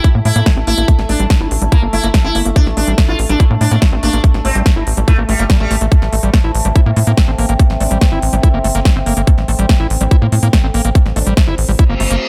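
Intense and hypnotic, this psychedelic trance excerpt drives on an up-front overdriven electronic kick and a tight, punchy sequencer bass, with a big-room dance kit adding a punchy snare and crisp hats. A squelchy, gritty acid bass riff runs through a filter sweep with distortion and dub echo, while a slow-attack drone with moving overtones holds sustained chords under chorus and reverb, all pumping against the kick. A bright, buzzing sitar melody shimmers through phaser and dub echo until 5.7 seconds, a very quiet detuned wobble bass adds a second line from 6.7 seconds, and a reverse cymbal enters at 11.9 seconds.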